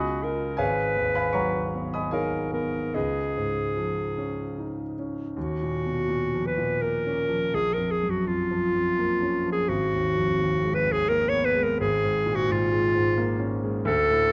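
A clear, soft-attacked clarinet and a vintage-toned grand piano begin together, the clarinet carrying a classical-style solo melody up front while the piano supports it from deep bass to high treble in this hazy, mysterious impressionist duo in a rubato three-beat time. Rich ninth and added-ninth chords colour the harmony, and a new section opens at 5.4 seconds. The clarinet's smooth upper edge and the piano's warm body are captured by close, detailed microphones within a moderate recital-hall reverb, in a passage taken from a longer piece.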